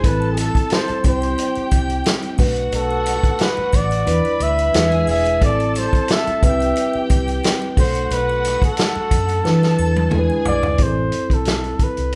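Lush 1970s-style soul in A dorian at 89 BPM, with a gentle 16th-note swing and a bittersweet, silky mood, cut from a longer piece. A breathy, whispered flugelhorn carries the melody up front with soft attacks and vibrato, while a distant violin section, bowed sul tasto with a woody, dark ensemble tone, adds a second line until 10.8 seconds. A mellow tine electric piano heard through its built-in speakers supplies clean accompaniment, and a foam-muted fingered electric bass gives a round, amped low end. The vintage acoustic drum kit sits up front with a punchy kick, medium-tuned snare, hi-hat and toms and a rolled-off top, playing a fill from 9.4 seconds, while a shimmering triangle sits close and dry in the background. The chords move through Am7, C, Bm7, Em7 and E7 before resolving to Am7 as a new section begins at 10.8 seconds, all heard as a band playing live in one room with moderate large studio reverb.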